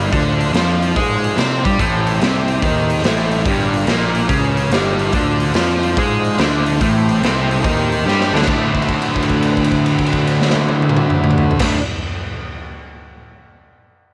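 A raw, gritty mix with light reverb and a small-room feel opens this short cut from a longer blues rock and southern rock power-trio piece, driving and swaggering at 144 BPM in 4/4 with a swung eighth-note feel. Up front, a double-tracked, compressed fuzz guitar plays a riff, while a punchy, overdriven picked electric bass carries the low end, both heard from the start. The acoustic garage drum kit sits forward too, with a boomy kick, medium-tuned snare, hi-hat, toms and crash cymbal sounding saturated in a bright stone room with a pumping ambience and a rolled-off top. Further back, an overdriven tonewheel organ holds thick sustained chords with key click, percussion, vibrato and a subtle chorus. The harmony moves through Dm7, Am7 and Gm7 before a drum fill at 8.0 seconds leads into a closing D13 passage, where a held note rings from 8.5 to 11.6 seconds.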